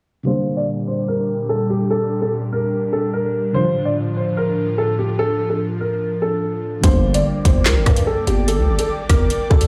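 A dark, boxy grand piano carries the melody up front in this ominous drill hip hop passage, its tone softened by a low-pass filter and trailed by digital delay. Beneath it, a felt-muted upright piano plays a soft, intimate accompaniment in the background, while an airy, breathy pad holds detuned, chorused chords with a slow attack and long release. A filter sweep runs through the opening stretch from 0.3 seconds, building a brooding atmosphere over the two pianos and pad. At 6.8 seconds the half-time drill kit arrives up front with a hard-clipped kick, woody snare, metallic hats, handclaps and rim clicks. A growling, buzzy 808-style bass with a fast attack enters at the same moment. The whole sits in light reverb with the feel of a big system playing in a bare room, and the clip is cut from a longer piece.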